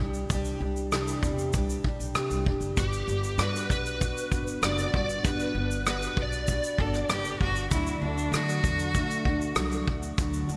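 An overdriven slide guitar, played with fingerpicks and colored by ensemble chorus and digital delay, carries the melody from 2.8 to 7.4 seconds in this sunny, easy-going acoustic pop excerpt at 97 BPM in G major, over a full-bodied, double-tracked fingerpicked steel-string acoustic guitar, a woody pizzicato upright bass and a soft brush kit with tight kick, rim click, shaker and gated reverb, while a smooth bowed cello with vibrato adds a second line from 6.8 seconds as the chords move from Cadd9 to Gmaj7 to D, all set in a lush hall with bright 1980s-style digital production.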